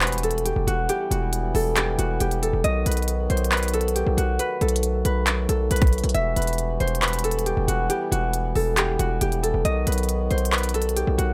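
A barely audible electronic impact sounds in the first 0.9 seconds as this eerie, hard-hitting trap excerpt begins, with harp, harmonium, bass and drums all starting together and playing through to 11.3 seconds. At 137 BPM in 4/4 with a half-time feel, the piece sits in E harmonic minor, alternating between Emadd9 and B chords. Up front, an acoustic concert harp carries the melody in a mellow, ringing, fingerpicked tone, softened by a low-pass filter and echoed by digital delay, while a reedy, breathing hand-pumped harmonium holds sustained chords in the background. A distorted 808-style bass drives the low end, its sine tone layered with noise and saturated into a heavy, aggressive sound with a fast attack and a decaying tail. The produced trap drum kit combines a hard-clipped kick, crisp hi-hats, handclaps and rim clicks, all set in light reverb and digital ambience.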